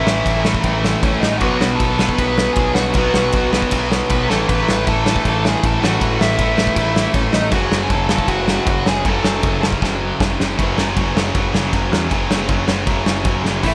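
A lightly reverberant, rowdy punk rock excerpt at 157 BPM, cut from a longer piece, with a loose, up-front acoustic drum kit whose pumping room, dark cymbals and punchy kick drive a rebellious 4/4. Three picked rhythm guitars sit in the background, one bright and double-tracked, one overdriven and raw, one tight and distorted, over a growling, punchy overdriven bass, moving from A through B5, A5 and F#m to F#5. A dark, smooth overdriven lead guitar with delay carries the melody until 9.6 seconds, and drum fills mark 4.3 seconds and the run into the closing section at 10.6 seconds.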